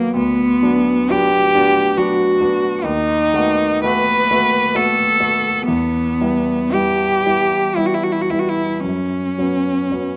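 Yearning and solemn, this brief romantic classical excerpt for cello and grand piano moves in a flexible, rubato 3/4 at around 54-71 BPM in B minor, with the tuning set slightly low at A4 = 437 Hz. A single bowed cello carries the melody up front, its tone rich, smooth and even with vibrato, while the clear, present grand piano accompanies with long sustain, both playing throughout the 10.2 seconds. Close, detailed miking and light reverb keep the duo intimate as the harmony passes from Bm/D through B7/D# and Em to an unresolved F#sus4 at 8.8 seconds.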